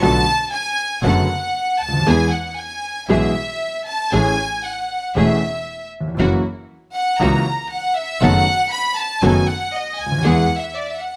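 This tango excerpt opens with all four parts at once, setting a tense, melancholic mood in a loose, rubato 4/4. A rich, biting violin section sits up front with light vibrato, carrying a bowed second line. Beneath it, a warm concert grand piano with a deep, vintage bass provides the accompaniment, while a dark, woody string section adds lush, bowed stabs played sul tasto with vibrato. A single bowed double bass anchors the low end with a clear, earthy tone and a smooth top. The harmony moves through Bm7, E, Amaj7, F#7 and B7/F# before returning to E. At 10.5 seconds the piano, strings and bass stop, leaving the violins alone until 11.2 seconds, all captured with close, detailed microphones and a light reverb.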